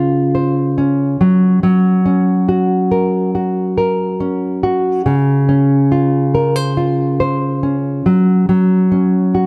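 A dark, warm production with light reverb frames a solo nylon-string guitar, its thumb-plucked classical tone sitting up front across a range from Db3 to C5. This hopeful, heartfelt pop excerpt moves at 70 BPM in a straight 4/4, cut from a longer piece and tuned slightly sharp to A4 = 441 Hz. Over 9.5 seconds the guitar moves between Dbmaj7 and Gb, ending on a bare Gb5 at 8.1 seconds.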